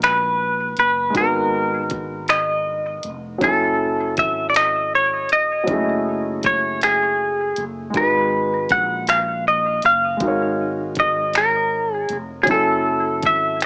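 A clean, picked semi-hollow electric guitar carries the melody up front, its compressed hollow-body tone given a cassette-tape grain, over a late-night, sultry slow R&B groove in 6/8 at 53 BPM, tuned to A4 = 436 Hz. A warm grand piano, also on cassette, comps through G#m9 and F#m9 chords, while a dark, round fretless electric bass with subtle chorus sits low and punchy beneath. A produced electronic kit of finger snaps, warm hi-hat and a knocking kick completes this short cut from a longer piece, which has a homemade, small-speaker feel and light reverb.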